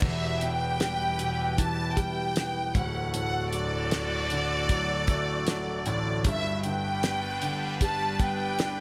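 A melancholic pop ballad in a straight 4/4 feel, this short passage from a longer piece carries a longing mood over a chord movement from Em to D at 2.7 seconds and on to G at 6.2 seconds. A lush studio violin section sings the melody high up front, its bowed ensemble tone expressive and full of vibrato. Beneath it, a concert grand piano gives clear, intimate accompaniment reaching into deep bass, with the action noise of the instrument audible in its polished, present sound. A sweeping pad of detuned sawtooth tones sustains the chords with a slow attack, long release, filter swell and chorus, lending a bright, evolving glow. A damped 70s acoustic drum kit sits dry and up front, with a fat snare, tight kick, hi-hat and crash cymbal, all framed by light reverb and a small room ambience.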